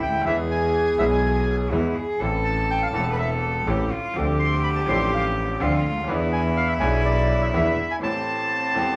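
Melancholic and sultry, this short tango passage in A minor moves at 124 BPM with a rubato feel, its reedy, vintage bandoneon carrying the melody over a bowed cello second line that sounds nasal and earthy. A biting, intense bowed double bass anchors the low end until 7.7 seconds, while a bright concert grand piano with audible action noise and deep bass fills in the accompaniment through the chords E, Am, Dm7 and E7, settling on Am7 for a break at 8.0 seconds. The band plays live together in one room, bathed in a wet large-studio reverb.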